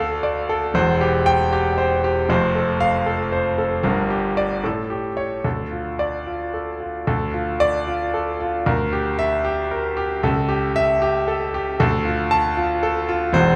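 Classical virtuoso piano study in D minor, cut from a longer piece, with a passionate, stormy mood. A solo concert grand carries everything, moving in a rubato 6/8 at about 77 dotted-quarter beats per minute and reaching from deep bass notes up into the upper treble. The instrument sounds clear, polished and up front, with an intimate closeness that lets the mechanical action noise come through. A recital hall reverb adds a generous, wet tail of about 1.4 seconds around the piano. The harmony moves through dark minor-key turns, and at about 7.1 seconds a new section opens, its bass stepping from D down to C sharp before settling back on D minor near 11.8 seconds.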